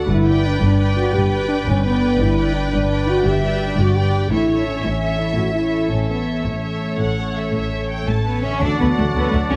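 A triumphant, heroic adventure-film cue in A mixolydian at 113 BPM in a straight 12/8 opens with lush bowed strings, the distant violins carrying the melody over a second violin line, rich violas, woody cellos entering at 0.1 seconds and an up-front double bass, while mellow French horns hold sustained chords and a very quiet harp rings out arpeggios in a moderate scoring-stage reverb, the harmony moving from G to A before a clear oboe, bright clarinet, pure silver flute and a tight trombone section join on the D chord at 8.6 seconds as the excerpt is cut off.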